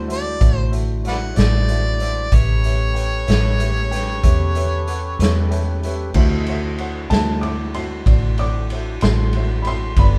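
This slow blues in 12/8 has a soulful, swaggering mood and sounds like a band playing live together in a moderately ambient studio room, cut from a longer piece. A warm, overdriven harmonica carries the melody with light vibrato, scooped notes and tongue slaps in a jazzy solo voice, and it drops out at 5.5 seconds. A polished baby grand piano accompanies throughout and adds a fill from 5.2 seconds, while a tonewheel organ holds clean sustained chords through a slow rotary speaker in the background. Up front, a vintage foam-muted fingered electric bass gives a round, punchy low end, and a gritty, saturated acoustic drum kit with a medium-tuned snare, punchy kick, hi-hat, ride and crash sounds dark, with a rolled-off top in a bright stone room. At 7.1 seconds an intimate upright piano enters high in its range for a woody, natural solo line with short sustain and audible action noise, over harmony that moves between D9 and A9.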